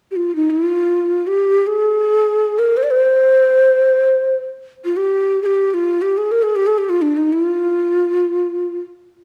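Longing and hypnotic, this brief passage from a longer Persian modal piece unfolds in free time as a lone end-blown ney, breathy and hollow with vibrato, soft attacks and rolled-off highs, sits up front between D4 and D5 from 0.1 to 8.8 seconds, bathed in moderate recital-hall reverb.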